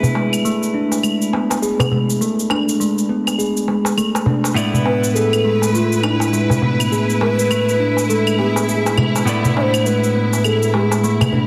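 Earthy and meditative, this organic downtempo passage, cut from a longer piece, moves with a gentle swung sixteenth-note feel. A round, ringing steel tongue drum played with firm rubber mallets carries arpeggios up front, softened by a low-pass filter and tape echo. A clean, picked electric guitar with a compressed tone and its own tape echo provides accompaniment. Darbuka struck with soft hands brings a clay-shell, natural-skin tone, while cabasa and claves add a produced, electronic edge that sounds re-recorded in a large room. At 4.6 s a lush, bowed studio string section enters with sustained chords, and at 4.9 s an airy, hollow bass bansuri takes the melody, close-miked with tongued notes, vibrato and tape echo. A moderate hall reverb surrounds the dense, heavily limited modern master, beneath which a faint mains hum can be heard.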